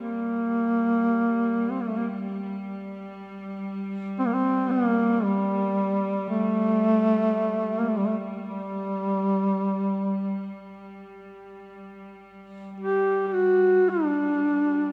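A mellow duduk sings a mournful, solemn melody up front with vibrato and a folk-style phrasing, carrying this Caucasian lament in a free, rubato feel. Beneath it, a bright, earthy chamber cello section holds a bowed drone on G3 with light vibrato, sitting well back in the mix. The whole fragment is bathed in a wet church reverb, and a faint mains hum lingers in the background.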